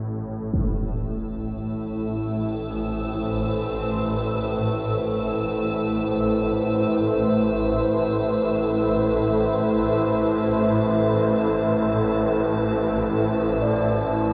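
A sweeping, resonant pad sits up front in this unsettling dark ambient drone excerpt, its bright, detuned sawtooth tone holding sustained chords from 0.5 seconds with a filter swell and chorus. Beneath it, a swarming drone in the low register moves with a tense, granular, evolving character, detuned and up front, and bathed in its own reverb with subtle chorus. A huge, dark impact, muffled by a low-pass filter, lands at 0.5 seconds as the pad enters. An icy, crystalline glass pad joins at 1.3 seconds, airy with a noise layer and sub octave beneath its sustained shimmer. From 2.7 seconds, tubular bells fade in quietly in the background, playing solemn, mellow arpeggios through a delay with a metallic ring. The whole mix is dreamy and soaked in a lush hall reverb.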